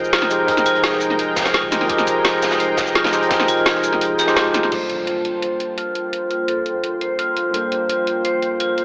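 A straight liquid drum and bass groove rides on an up-front electronic kit with a woody snare and metallic hats, a gritty, saturated breakbeat kit in the background, and a thumpy sampler-style kick that drops out just before a band accent at 4.4 seconds. Over this soulful, lush bed, a clean tine electric piano and a ringing hard-mallet vibraphone play through low-pass filter and digital delay, joined by a thick, warbling detuned sawtooth pad with chorus and sidechain pumping, while a deep sine sub bass sits underneath until 4.7 seconds. At that point the chords shift, a distant electronic impact hits, and filter sweeps move across the electric piano and vibraphone, all heard through a lush hall reverb with an AM radio colour in this short excerpt from a longer piece.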